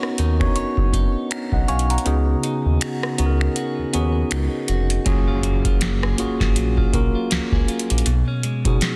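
A booming analog drum machine sits up front in this romantic, dreamy contemporary R&B excerpt at 80 BPM in F# major, with a deep kick, a tonal, softly clipped snare, metallic hats, rim clicks and finger snaps riding lightly swung sixteenths, its kick dropping out from 2.1 to 5.1 seconds, while a mellow tine electric piano voices chords from Bmaj9 to F#maj9, a clean, compressed, picked electric guitar spins delayed arpeggios, a smooth sawtooth synth bass with vibrato and a ring-modulated edge holds the low end, and a background electronic impact lands at 5.1 seconds in a dry, dense, heavily limited mix.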